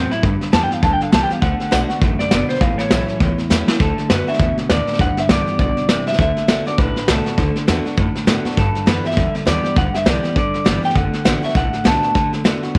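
Light small-room reverb surrounds this short rockabilly passage, cut from a longer piece, with a muffled, lo-fi brush kit sitting up front. It swings along at 201 BPM in 4/4 and D mixolydian, with a rowdy, retro mood. A bright, twangy, slightly broken-up electric guitar through a small old amp carries the melody with tape echo. A clean, compressed electric guitar in the background plays a riff with harmonic tremolo and takes a solo through the first 3.8 seconds. Behind them, a jumbo steel-string acoustic guitar with old strings adds picked, full-bodied accompaniment, while a dark, thumpy pizzicato upright bass on gut strings holds the low end. The vintage brush kit, with a punchy kick and rolled-off top, enters at 0.1 seconds and plays a fill at 3.5 seconds, as the chords move through G, D and A before settling into longer stretches of D and G.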